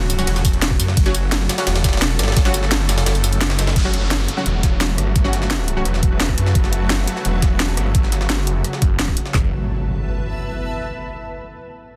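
A snarling, detuned saw bass growls up front with sidechain pumping beneath a swarming, pumping drone and bold orchestra-hit-like synth stabs with tape echo as this dark, futuristic technical drum and bass cut opens on F# minor at 172 BPM, driven by layered, overdriven electronic kits with a knocking kick, woody and cracking snares, handclaps, bright hats, ride, rim click and tambourine, plus a gritty, pitched-up jungle sampler-style kit in the background, while the kick drops out from 3.1 to 3.8 s, an electronic downlifter and impact arrive at 3.8 s, and a blurred granular cloud pad drifts in at 5.0 s within a mechanical, dense, heavily limited mix.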